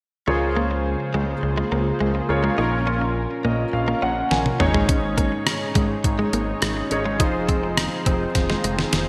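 A bright, glossy 1980s-style digital production bathed in lush hall reverb carries this nostalgic pop excerpt in Db major at 104 BPM, where a warm concert grand piano with audible action noise and a piano fill at 3.2 seconds plays accompaniment alongside a fat sawtooth analog bass, a compressed, direct-recorded clean electric guitar riff with chorus and delay, bold brassy synth stabs and an evolving, detuned resonant pad in the background, before a thumpy 12-bit drum machine with gated reverb enters up front at 4.3 seconds with a fill.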